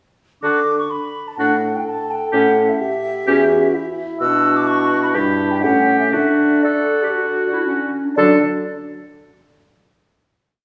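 Spirited and lively, this quick classical-period movement for wind quintet in D major moves at 116-129 BPM in a straight 4/4, with an airy concert flute carrying the crisp-edged melody above a lightly vibrato oboe second line and a bright clarinet playing short accented chords in the rhythm of the tune, while a mellow, up-front bassoon sets the bass on the beats and a clear French horn enters at 1.4 s with a background counter-melody, the quintet ringing in a wet recital-hall reverb before the theme gives way to a final chord at 8.2 s.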